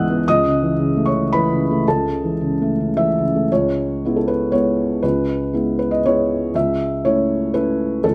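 This neoclassical minimalist piano piece, cut from a longer work, carries an intimate, melancholic mood in C# minor. A solo felt-muted upright piano plays throughout its 8.1 seconds, sitting up front with a soft, mellow tone shaped by thick felt, ranging from C#2 up to F#6. The pulse moves in 3/4 with a rubato feel, drifting between 108 and 121 BPM. The harmony opens on A/C#, shifts to C#m7 at 3.5 seconds as a new section begins, and returns to A/C# at 6.5 seconds. Light reverb and a live, single-room recording keep the sound close and personal.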